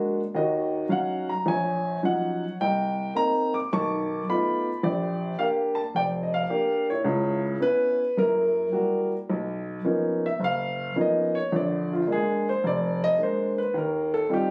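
Relaxed and sophisticated, this short solo jazz excerpt features a lone upright piano swinging its eighth notes in 4/4, moving through rich chords such as Ebm9, B7#11 and Gb7b9 before settling on Eb69. The piano sits up front with a woody, intimate, vintage tone, long sustain and audible action noise, spanning from deep bass to the high upper register. Captured on a phone in the room, the sound carries club reverb and compression, with the second section beginning at 9.3 seconds.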